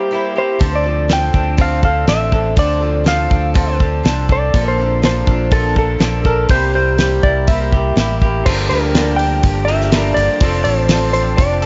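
A dark, clean lap steel guitar carries the wistful, dusty melody of this folk rock and heartland rock excerpt in D minor at 122 BPM, over a shimmering, octave-doubled twelve-string acoustic guitar, a slightly broken-up, lo-fi electric guitar riff, and a round, amped fingered bass and dry 70s drum kit with a fat snare and tight kick that both join at 0.6 seconds, while a very quiet tonewheel organ with slow rotary speaker adds sustained chords from 8.4 seconds under light studio reverb.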